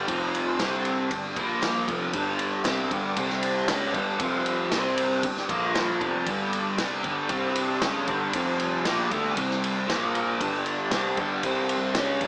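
A crunchy, double-tracked overdriven guitar riff with a flanger opens this kaleidoscopic, hazy psychedelic rock excerpt, sounding together with a buzzing, shimmering tanpura drone, a very quiet tonewheel organ holding sustained chords through a slow rotary speaker with key click, and a round, foam-muted fingered bass sitting dark in the background. A vintage drum kit joins at 0.1 seconds with a punchy kick, a medium-tuned snare and ride cymbal, its rolled-off top and small-room character placed up front beside the picked guitar. A jingly tambourine enters at 0.6 seconds, barely audible in a live room. The harmony cycles through F5, C5, G and Bb5 in a steady straight four. A moderate echo chamber reverb and a small speaker sound give the mix a boxy, vintage haze, and the piece is cut from a longer work.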